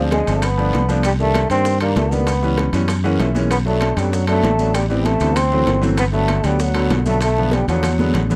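A dry, close 1970s-style studio sound frames this sunny, lively Afro-Cuban jazz excerpt in G major at 194 BPM, where a veiled, cup-muted trombone with light vibrato carries the melody over a breathy, hollow flute second line in the background, a clear concert grand piano with audible action noise that plays a fill at 2.9 seconds, and a growly, up-front fingered electric bass, while tight high-tuned bongos, damped congas, ringing metal-shell timbales, a raspy guiro and grainy, distant maracas keep the percussion bubbling until a drum fill at 7.8 seconds.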